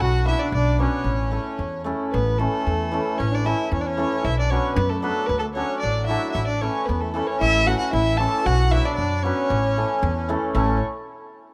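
A festive, virtuosic Balkan wedding-band excerpt opens on a dark, woody bowed fiddle carrying the melody with light vibrato, beside a reedy, close-miked accordion second line with slow beating and a pizzicato upright bass on steel strings, up front, at 114 BPM in a straight 2/4. From 0.2 s a bright hammered dulcimer adds shimmering, ringing accompaniment as the harmony moves through Bm, A and D in A major, tuned slightly low to A4 = 437 Hz. The rough home demo mix sits in a small room with light reverb, and the fiddle sounds distant despite its forward placement.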